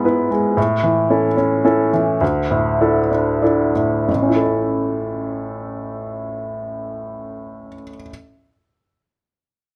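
Classical in 3/4 with a rubato feel, this short excerpt cut from a longer piece carries a hopeful, tender mood on an upright piano that plays accompaniment from 0.0 to 8.1 s, ranging from A1 to E5. The piano sounds clear, woody and intimate, sitting up front with long sustain and audible action noise, while light reverb frames it naturally. The opening passage slows as it moves from E/G# through A and Dsus2, returning to A at 4.1 s as a second section begins.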